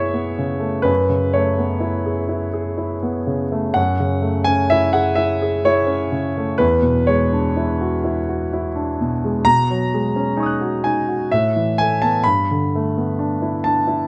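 A warm concert grand piano, up front with a deep bass and a natural tone, plays this mysterious, hazy impressionist classical solo in F# minor at a rubato 63 BPM in 3/4, drifting through extended chords such as F#m11, E9 and G69 across a range from E2 to F#6, captured by close, detailed microphones in a moderate recital hall reverb, in a 14.1-second excerpt cut from a longer piece.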